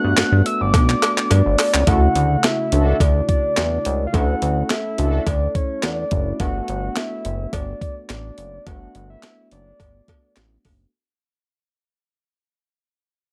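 A straight 4/4 groove at 106 BPM drives this smooth, feel-good slice of early-eighties boogie funk, cut from a longer piece and tuned slightly flat of standard pitch. A clean 12-bit drum machine sits up front with a thumpy kick, medium-tuned snare, hi-hat and handclaps, its sampler-style sound carrying a tape-like glow, while a compressed, saturated cowbell rings metallically in the background. A glossy, nasal synth bass, also up front, mixes pulse and sawtooth waves with a plucky filter, pulse-width modulation and chorus. An overdriven tine electric piano adds barky, gritty chords through a combo amp, moving from Gmaj9 to Dmaj7 and back. A soft, octave-layered synth lead carries the melody with a full, round, dark tone, vibrato, chorus and slapback echo. The drum fill ends at 1.9 s, where a mellow, brassy synth line with detuned sawtooths and a filter sweep joins until 5.2 s, and the whole mix begins a long fade-out in a dry room with little reverb.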